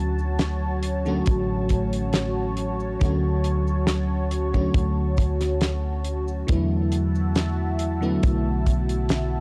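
Faded and nostalgic, this short vaporwave fragment drifts at a slow, gently swung pace, cut from a longer piece. An FM electric piano with a soft pad layer carries the accompaniment, its fast attack and decaying tones softened by subtle chorus and tape echo, moving from Dmaj7 to E9sus4 at 6.5 seconds. Above it, a lush unison pad holds sustained chords in a thick, detuned sawtooth-and-square blend, bright through chorus and phaser and roughened by vintage 12-bit sampler grit. A dark, round hollow-body short-scale electric bass sits up front, fingered and amped. A damped 70s drum kit with a fat snare, hi-hat and cabasa stays dry and close, joined at 1.3 seconds by a tight acoustic kick drum. Studio reverb and a gritty hardware recording with cassette tape character give the whole a worn, dreamlike haze.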